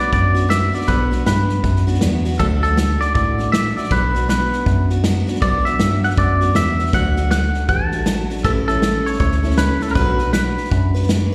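Brooding and heartbroken, this short cut from a longer honky-tonk and classic country piece swings along in 4/4 as a twangy, compressed electric guitar carries the melody up front, its clean tone dressed in plate reverb, slapback and tape echo. A full-bodied picked dreadnought acoustic guitar with its own slapback picks out an accompaniment beneath, while a bell-like tine electric piano takes an unusual role playing the bass line and a natural country drum kit drives with a punchy kick, medium-tuned snare and hi-hat. The whole thing has the feel of a live gig heard through the venue's PA, with a recital hall's reverb around it, as the chords move between Bm, D and A.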